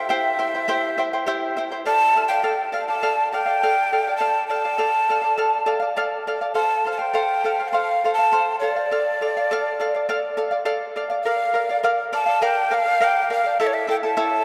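Melancholic yet festive, this Andean folk piece moves at 102 BPM in a straight 4/4 in D minor, a short cut from a longer work. A breathy, hollow quena carries the melody up front with vibrato and tongued notes, while a bright, shimmering fingerpicked charango with double strings plays the accompaniment throughout. Both sit in a vast, echoing cathedral reverb, and the harmony passes from C and Dm through F before turning to Bb and A in the closing section at 11.2 seconds.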